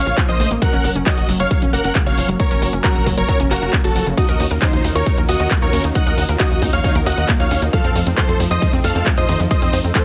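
A huge, detuned supersaw lead carries the euphoric melody of this driving uplifting trance excerpt, pumping against an up-front, tape-warm electronic kick and a dry analog drum machine of handclaps, hi-hat, ride cymbal and tambourine, while a nasal sequencer bass drives underneath and bright ring-modulated pluck arpeggios with dub echo, a catchy plucky unison lead through cassette tape and dub echo, and a silky chorused string pad fill the background over Bbmadd9, Gb, Ebm7 and F7 chords, all wrapped in light reverb and a heavily compressed radio sound.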